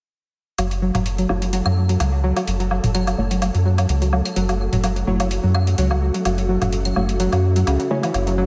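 A swung 4/4 pulse at 127 BPM drives this quirky, sparse minimal techno excerpt in F# minor, which rests on a single F#m7 chord. Overdriven, metallic electronic hi-hats and a small-room kit of electronic woodblock, toms and claves touched by tape echo start at 0.6 seconds, alongside a round, up-front analog bass and a twangy, string-like resonator pluck riff with chorus and delay. A flickering, grainy texture sits in the background, muted dub chord stabs arrive at 1.3 seconds through phaser, ensemble chorus and tape echo, and from 2.9 seconds a deep, moody ambient pad with ring modulation settles in behind, all within a dreamy mix soaked in hall reverb.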